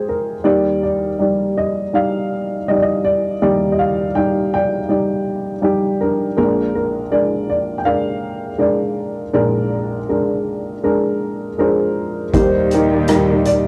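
In a straight, unhurried 4/4, this intimate, hopeful acoustic folk-pop ballad opens with a dark, woody upright piano carrying the melody alone and up front, its short sustain and audible action noise softened by cassette tape. At 12.3 seconds, a silky, warbling analog string pad with ensemble chorus, a bright fingerpicked Celtic harp ringing in the background, a distant bowed cello playing the bass with vibrato and portamento, and a roomy soft-mallet drum kit with a punchy kick, hi-hat and rim click all join the piano. The moderate booth ambience gives it a close, homemade feel, and the excerpt ends at 13.7 seconds.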